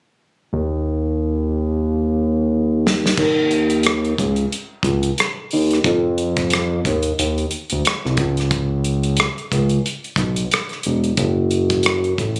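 Swung sixteenths give a laid-back pulse to this introspective, late-night neo-soul R&B fragment, where a smooth, up-front synth bass with a sawtooth edge, sustained notes and vibrato sits alone from 0.5 s until an acoustic soul kit joins at 2.9 s, its tight kick, medium-tuned snare, rim click, hi-hat and dark crash cymbal carrying a rolled-off top and small-room feel, all captured on a phone with little reverb.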